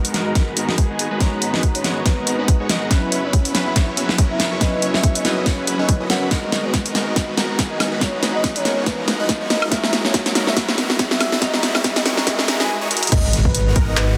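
A hard-clipped electronic kick sits up front in this bittersweet, emotional future bass cut from a longer piece, built in G# minor at 141 BPM with a swung half-time feel, where a big-room dance kit with a huge snare, handclaps, hi-hat, crash and woodblock drives a long build-up under filter-swept, bright supersaw chords, a dark, round octave-layered synth lead with vibrato and phaser, glassy wave-folded digital keys in the background and a very quiet, fat detuned analog bass. A faint riser enters at 4.0 s before an impact lands the drop at 13.1 s, where a punchy unison pluck arpeggio joins, all set in a lush hall reverb under a dense, heavily limited master.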